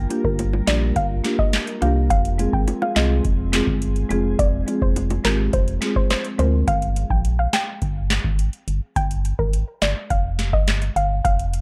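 Dancehall at 105 BPM in a bouncy, tough mood, with a booming, tape-warm analog drum machine up front (deep kick, crisp snare, metallic hi-hats, handclaps and rim clicks) alongside a hollow, organ-like FM bass over Gm7 and Fm, a round, dark pluck melody with chorus, woody marimba accompaniment, low-tuned bongos and a glassy, ethereal pumping pad in the background, the pad, marimba and bongos dropping out around 6.6 seconds so that drums, bass and pluck carry the G7(no3) section to the end of this gritty, dry cut from a longer piece.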